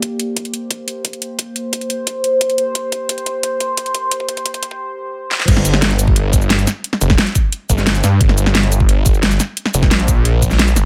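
Dark and mechanical, this excerpt of technical drum and bass at 176 BPM in G minor opens with a build-up where a resonant, wave-folded pad holds sustained chords under a filter sweep, colored by chorus, phaser and sidechain pumping, while a dubstep kit with a huge snare, metallic hats, cabasa and crash runs a drum fill alongside a knocking, high-passed electronic kick. At 5.5 seconds the drop arrives as the pad stops and a snarling, growling saw bass with detuned unison and overdrive joins the drums, saturated and up front, between F1 and G2. The dry mix keeps the tape-warm drums up front and close.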